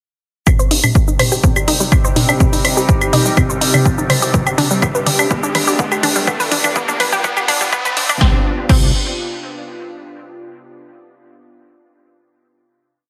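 A punchy four-on-the-floor kick, a tape-warm house kit of claves, shaker, open hat, mid tom, snare and crash, a very quiet, fat sawtooth bass sequenced in sixteenths and a bright, detuned unison pluck arpeggio with dub echo, its 12-step loop drifting against the bar, open this short, hypnotic and melancholic melodic techno piece at 124 BPM in C harmonic minor; an evolving wavetable pad and a resonant overtone-sweeping drone, both chorused and pumping, arrive at 1.3 s, and a background riser joins at 3.0 s as a filter-swept build and drum fill climb to a final C minor chord at 8.2 s, within a dense, heavily limited master.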